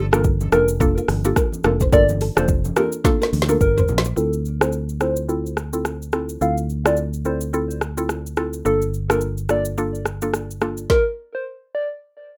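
A round, warbling FM synth lead with a vintage, keys-like tone carries the melody through this smooth, sultry afrobeats excerpt, over a swung groove from an up-front electronic drum kit with a deep kick, woody snare, metallic hats and toms, plus a fingered electric bass. A woody, mallet-like synth pluck adds chorused accompaniment, while a fingerpicked nylon-string guitar riff with delay and low-tuned background congas play only until about 4 seconds, when a drum fill leads into the second section. From 4.2 seconds a filter sweep runs to the end as the chords move from Gm7 to Dm7 and back, all in a rough home-demo mix with light reverb.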